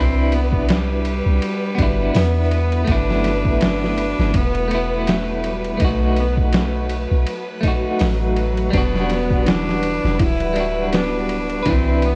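Melancholic and dark, this trip hop passage is cut from a longer piece and moves at an unhurried, lightly swung pace over a cycle of Cmaj7, G6, B7 and Em9. A bright, nasal cello carries the melody with light vibrato and an airy bow, its biting tone trailed by tape echo, while an electric guitar at the edge of break-up plays twangy, picked accompaniment through tremolo. Beneath them sit a clear, lush studio string section holding sustained chords with a vintage 12-bit sampler grit, a soft, round 808-style bass that sits deep and up front, and a very quiet reversed, granular texture that swells in from 0.1 seconds. A compressed, pitched-down sampler drum kit enters at 0.3 seconds with a thumpy kick, medium-tuned snare, hi-hat and ride cymbal, re-recorded in a small room. At 8.7 seconds a felt-muted upright piano joins in the background with intimate arpeggios through delay, its action noise audible. 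The whole recording is dry, coloured by worn cassette tape with a warbling pitch drift.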